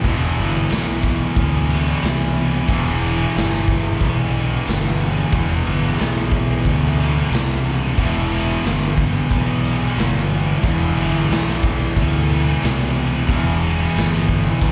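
This sounds like a live gig heard through the venue's PA, with the reverb of a recital hall hanging around the band. It is a short stretch of hypnotic, brooding stoner and doom metal in a straight four, cut from a longer piece and sitting on a single minor chord the whole way. A double-tracked, picked guitar drives the riff up front with warm, distorted fuzz. Underneath, a picked electric bass adds a bright, overdriven grind with a direct, amped punch. The acoustic drum kit is gritty and saturated, with a rolled-off top, a medium-tuned snare, a punchy kick and crash cymbals, all set in a bright stone room that pumps. All three parts play together from 0.0 to 14.7 seconds.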